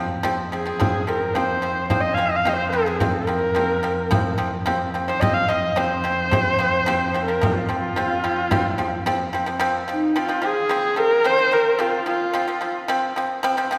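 Mongolian folk in a solemn, vast mood at 109 BPM, this excerpt features a warm, husky horsehead fiddle carrying the up-front melody with vibrato and portamento over mellow, fingerpicked pipa arpeggios, a rich, distant bowed cello drone that stops at 9.7 s, and a close frame drum that plays until 9.4 s, all set in a reverberant concert hall.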